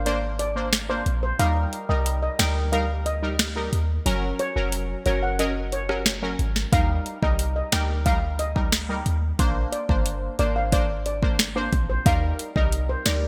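A straight, bouncy dancehall groove in four comes from an electronic afro-pop drum kit sitting up front, with a deep kick, sharp snare, metallic hi-hats, rim clicks and finger snaps, and it begins at 0.1 seconds. Underneath, a clean 808-style bass plays a boomy sine tone with a fast attack and dark decay, anchoring the low end across the whole clip. A punchy, nasal synth brass stab built from detuned sawtooth waves carries the accompaniment with a filter sweep, chorus and phaser, while a mellow double seconds steel pan played with soft rubber sticks carries the shimmering melody through delay. The summery harmony moves through Bbadd9, Eb and Gb, and the first 6.7 seconds form a break. The bright, 1980s-style digital production sits in a moderate plate reverb, and the clip is cut from a longer piece.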